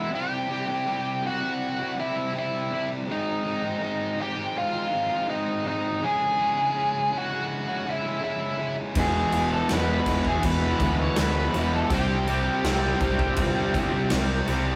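Restless and bittersweet, this short cut from a longer quiet-loud alternative rock piece moves at 82 BPM in a straight 4/4. It opens with a dark, up-front octave-fuzz lead guitar carrying the melody over a bright, picked distorted electric guitar riff, the chords moving from C to G# to C#m. At 9.0 seconds the band crashes in as the harmony shifts to E and then back to C. A double-tracked, overdriven stack guitar and a very quiet, dark fuzz guitar thicken the riff. Beneath them, a growling picked bass adds round, punchy low end, while a huge acoustic drum kit with a punchy kick, a medium-tuned snare and crash cymbal sits forward in a big, natural-sounding room. The whole take has the rough feel of a rehearsal-room recording with moderate reverb.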